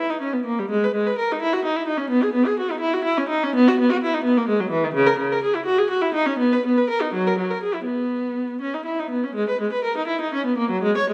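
Radiant and dance-like, this short passage from a baroque-style suite movement is played by a single viola, heard solo and up front from 0.0 to 11.1 s. It moves in 6/8 at roughly 78-87 BPM counted in dotted quarters, with a free, rubato pulse. Beginning in G# minor, the music turns to B major at 3.6 s, and the line ranges from C#3 up to C#5, tuned to A4 = 442 Hz. The bowed viola has a warm, expressive voice, colored by vibrato and sliding portamento. A wet recital hall reverb with a 1.5 s decay surrounds the instrument, and the recording is cut from a longer piece.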